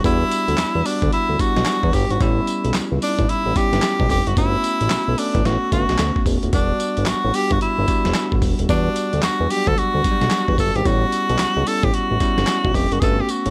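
Bouncy and punchy, this short cut from a longer new jack swing R&B track moves at 111 BPM in 4/4 with a 62% sixteenth-note swing, set in E dorian. A breathy tenor saxophone carries the melody up front, playing in a clear pop style with vibrato. Beneath it, a bell-like tine electric piano supplies bright, clean accompaniment, while a fat analog bass built from sawtooth and square waves gives a thick, nasal, evolving low end with a fast attack and sustained notes. The gritty, compressed sampler-style drum kit sits up front, with a thumpy kick, medium-tuned snare, hi-hat, handclaps and tambourine that carry a dusty, small-room character. The harmony cycles through lush extended chords, Em9, A9 and Gmaj9#11, and the dry mix has little reverb.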